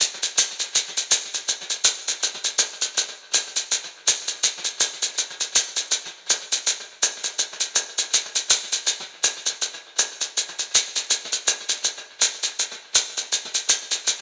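Trip hop at 81 BPM in 4/4 with a 58% swing on the 16ths, this melancholic, brooding fragment cut from a longer piece features only maracas blended with group handclaps. They sit acoustic and up front in a small room, soaked in dub echo. Light studio reverb and vinyl crackle run through the echo-heavy mix, and the music shifts into a new section at 1.5 seconds.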